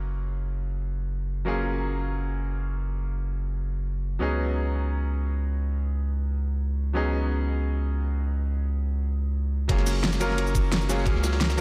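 Floating in free time, this dreamy liquid drum and bass excerpt opens with a bright, polished grand piano ringing through diffuse ambient delay over a deep, thick saturated sub bass held up front, moving from F#maj7 to C#7sus4 and back, until a drop at 9.7 seconds brings in an overdriven, knocking electronic kick that stops at 11.1 seconds, a layered pop drum kit with fat snare, hi-hat and cabasa, and a gritty, dark-cymbaled breakbeat kit with snare, hi-hat and ride kept in the background.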